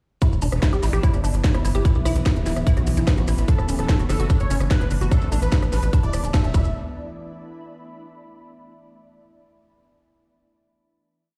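Psychedelic trance at 147 BPM in a straight 4/4, driving and psychedelic, built as a short drop that runs from 0.2 seconds and resolves into a final chord at 6.7 seconds. An up-front electronic kick pounds four-on-the-floor, joined by a drum kit with a cracking snare, crisp programmed hats and rim clicks, plus grainy hand-played maracas in sixteenths tucked into the background. Underneath, a tight, punchy sequencer bass rolls in sixteenth notes, while a very quiet, nasal vowel-sweep wobble bass adds short answering phrases with a formant filter and chorus. A woody, wave-folded pluck carries a dark acid riff with accents, colored by chorus, tape echo and sidechain pumping, and a thick, detuned unison lead enters at 3.5 seconds with a bright repeating riff melody through phaser and digital delay. An evolving wavetable pad drones on sustained chords and an ethereal, airy pad drifts through slowly shifting chords that linger to the end. 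The whole mix is played on a big sound system in a bare room with large studio reverb, and a band accent lands at 6.3 seconds.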